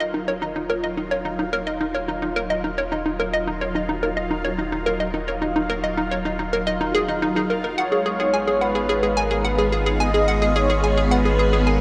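A straight 4/4 pulse at 108 BPM in Eb minor drives this expansive, cosmic excerpt of sequencer-driven space music, where a hollow, bouncy square-wave pluck riff sits up front with chorus and delay, a swirling vintage string machine and a round, deep analog bass both fade in beneath it, a bubbling texture of random filter steps moves between F4 and F5, and a breathy, flute-like lead with vibrato enters at 7.8 seconds as the chords move from Ebmadd9 to Abm, all set in a vast cathedral reverb.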